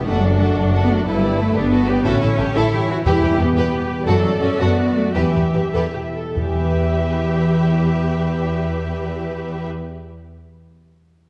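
A 6/8 pulse carries this cinematic excerpt, which slows down between 3.6 and 6.4 seconds, with a swashbuckling, determined mood. Lush bowed violin sections play the melody and a second line over intense violas, while rich cellos and focused double basses hold the bass, a ringing, thumb-plucked harp plays arpeggios in the background, and very quiet, round timpani on soft mallets enter at 3.1 seconds. A wet scoring-stage reverb gives the sound a spacious glow.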